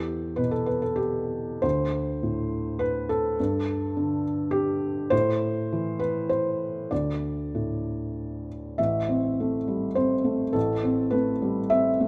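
A felt-muted upright piano plays alone from the first moment, soft and intimate with its action noise audible and its sound placed close and up front, in a rubato triple metre. This reflective, wistful piece of neoclassical minimalist piano moves through Em, D5, Gsus2 and Am, spanning A1 to E5, then shifts to an Am7 passage at 8.8 seconds. A moderate recital hall reverb surrounds the mellow tone, and the recording is cut from a longer piece, ending at 12.1 seconds.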